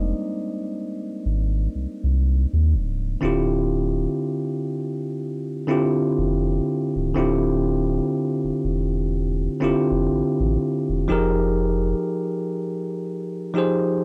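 This slow contemporary R&B cut opens on a bell-like tine electric piano taking a short solo over a rootless Fm11 chord, with a round sine sub bass sounding beneath it from the very start. At 61 BPM in 4/4 with a light swing on the sixteenths, the mood is longing and late-night, settling into D minor as the harmony moves to Dm11 at 3.2 seconds. The electric piano stays bright, clean and direct in the mid register, while the deep, warm sub bass sits up front with a fast attack and long sustain before dropping out at 11.9 seconds. The chords return to Fm11 at 11.1 seconds, and the electric piano carries on alone to the end of this fragment of a longer piece. A light reverb surrounds the parts, and the recording has a dry, gritty character with the texture of cassette tape.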